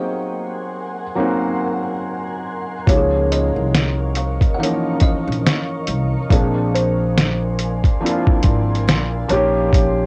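Lo-fi hip hop at a relaxed 70 BPM in Db major, this cosy, mellow excerpt from a longer piece sways with a 60% swing on the sixteenths. A buzzing kalimba carries the melody with a hollow, woody ring and a thumbnail pluck, while a felt-muted upright piano plays soft, intimate accompaniment up front, its action noise audible beneath the keys. Behind them, a granular cloud pad holds blurred, detuned chords that drift and evolve in its own reverb, moving from Ab9 to Db69, Bb9 and Eb9/Bb. At 2.9 seconds a pizzicato upright bass with a thumpy, steel-string tone enters alongside a pitched-down, compressed sampler-style drum kit of hi-hat, thumpy kick and medium-tuned snare, roughened by vintage 12-bit grit. The kalimba, piano and pad are all band-limited by a low-pass filter and cassette tape colouring, and the whole piece sits in light reverb with the feel of a home recording on cassette.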